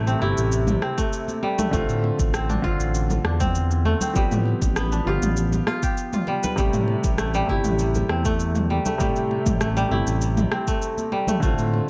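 Organic downtempo with a mystical, warm mood, where a bright, crisp kora plays fingerpicked arpeggios up front over a soft felt-muted upright piano with audible action noise, both carrying digital delay, while a smooth sawtooth synth bass with ring modulation pumps under the sidechain alongside a tape-warm electronic kit of rim click, shaker and toms, a deep electronic kick entering at 1.0 seconds, and ringing congas in the background, all moving through Am7, Dm7 and G7 in a light, reverberant ambience.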